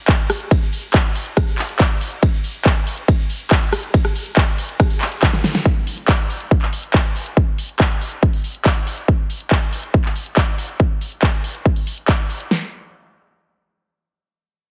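A big-room electronic drum kit opens this euphoric, soaring trance excerpt at 0.1 seconds, with a punchy kick and huge layered snare up front driving a straight 140 BPM drop in 4/4, while a second kit layer of handclaps, rim clicks, snare, and hi-hat and ride cymbal with sidechain pumping sits lower behind it; a drum fill at 5.2 seconds leads into the next section, and the kick-and-snare kit runs until 12.6 seconds, all set in light digital reverb with a heavily compressed, radio-like sound and a dulled top end.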